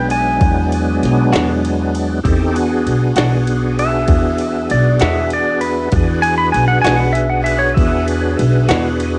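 A lo-fi home cassette recording with digital ambience and a dulled top end carries this gritty, rollicking slow-blues excerpt in 12/8, where a bright, twangy clean lap steel guitar plays a compressed slide line through analog delay until 8.1 seconds over reedy tonewheel organ chords with chorus vibrato and slow rotary speaker, a woody, up-front pizzicato upright bass, a glitchy electronic drum kit of deep kick, tiny snare and ride cymbal roughened by overdrive and cassette tape, and a scooped, direct-recorded clean electric guitar that joins at 1.3 seconds with tremolo-tinged accompaniment.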